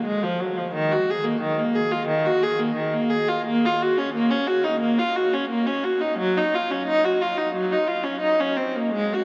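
A single bowed viola, clear and focused with a singing vibrato and placed up front, opens this grave, introspective fragment of a baroque-style suite movement for unaccompanied viola, moving freely in rubato between Eb3 and Ab4 while a vast cathedral reverb lets each phrase hang and echo across the 9.2-second passage before it is cut off.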